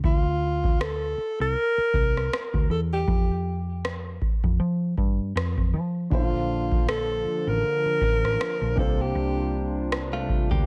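A mellow, up-front alto saxophone sings a tender, jazz-style solo line with vibrato and scooped notes over a dark, round hollow-body bass and a booming analog drum machine of deep kick and rim click, then at 6.1 seconds an intimate concert grand piano with audible action noise enters alongside a soft, flute-like chorused pad set in the background of this dreamy contemporary R&B excerpt, while a clean, compressed, direct-recorded electric guitar slips in with arpeggios at 10.1 seconds in a dry mix.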